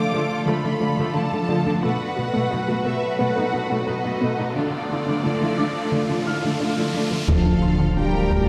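A cinematic hybrid of orchestral and electronic film score in D dorian at 88 BPM, relentless and futuristic, where lush bowed strings carry a high violin melody over a clearer second violin line, background violas and warm cello bass, all threaded with a warbling, lo-fi tape-like pad soaked in chorus and phaser, a squelchy resonant blip pluck tracing very quiet arpeggios, and faint glints of bright grand piano with audible action noise. An electronic riser climbs from 4.3 s to an impact at 7.3 s, where mellow French horns, a rumbling detuned saw bass, a punchy dark tuba, double basses and close, dry taiko drums join in. The whole is heard from further back in a reverberant scoring stage, and the passage is cut from a longer piece.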